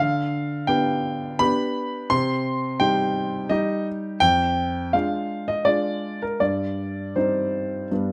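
Classical-period piano sonatina in triple time, serious and elegant, taken from a longer piece and shaped with a supple rubato feel across its 8.1 seconds. A solo grand piano carries everything, spanning from deep bass to bright upper notes with a warm, intimate, natural tone placed up front, and the mechanical action noise is audible. A light reverb adds a touch of space as the harmony moves through dominant and diminished colors before settling back onto the home minor chord.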